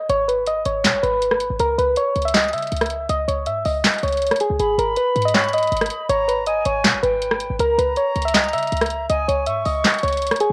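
A hard-hitting, brooding trap excerpt in G# harmonic minor runs at 160 BPM with a half-time feel, tuned to A4 = 442 Hz. Soft, round electric-piano-like synth keys carry the melody from the very start, sitting up front with chorus, a low-pass filter and a cassette-tape coloring that mellows their triangle-and-sine tone. A punchy, tight 808-style bass with a noise layer and decaying sine body joins at 0.1 seconds alongside an electronic trap kit of handclaps, rim clicks, a sharp snare and bright hi-hats, re-recorded in a small room and pushed forward with cassette grit. At 4.6 seconds an airy silver concert flute enters as a distant second line, its straight tone and crisp attack trailed by tape echo. The harmony moves between G#m and C#m under moderate spring reverb and digital ambience, giving the home cassette recording a hazy, lo-fi depth.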